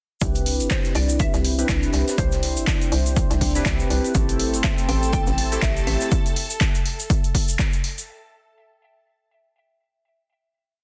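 A dense, heavily limited deep house groove in a small room, hypnotic and late-night, with an overdriven four-on-the-floor kick up front, punchy analog drum-machine claps and hats, a grainy egg shaker, a very quiet dry reggae breakbeat, a hollow knocking FM bass and glossy chorused polysynth stabs under a filter sweep, while a woody mallet-like pluck motif sits in the background and a dark analog pad and shimmering string-machine violins enter at 4.1 seconds, the strings holding a high note to the end at 8.1 seconds.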